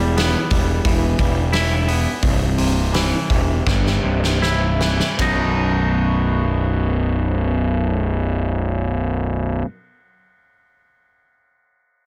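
Quiet-loud alternative rock in B major and 4/4, bittersweet and cathartic, moving at 76-90 BPM and slowing down through its opening section as the chords shift from Em to C. A dark, clean, fingered electric guitar with a twangy edge plays phaser-tinted arpeggios, while an up-front fuzz bass, bright, growly and overdriven, anchors the low end and a huge, natural arena drum kit with a punchy kick and medium-tuned snare drives hi-hat, ride and snare in a big room. The drums play a fill from 3.7 seconds and drop out at 5.4 seconds, just after the music lands on B at 5.2 seconds, leaving guitar and bass under light studio reverb in this fragment of a longer piece.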